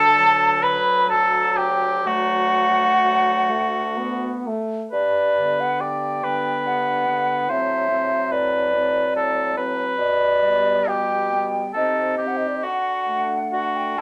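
Classical slow romantic movement for wind quintet in G major and 3/4, tender and serene at 61-74 BPM with a rubato feel, where a hollow, close-miked silver concert flute sings the melody with vibrato over a clear, up-front oboe second line, a French horn with light vibrato and a distant, roomy clarinet in the accompaniment, and a mellow, vintage bassoon on the bass, all in a moderate studio ambience as this section, cut from a longer piece, shifts from D to G at 4.9 seconds and passes through a C minor colour at 11.7 seconds before resting on D.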